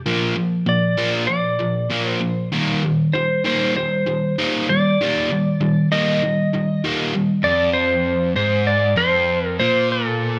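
A large studio room lends a moderate reverb to this swaggering, driving rock excerpt, which moves at 97 BPM in straight 4/4 with tuning set to A4 = 439 Hz. Up front, a bright, crunchy, double-tracked overdriven electric guitar plays a picked riff over Bb and Eb. At 0.7 s a dark, clean lap steel guitar joins, also up front, carrying the melody with fingerpicks, slide and volume swells. At 7.5 s the music moves into a new section on an F5 chord before the cut.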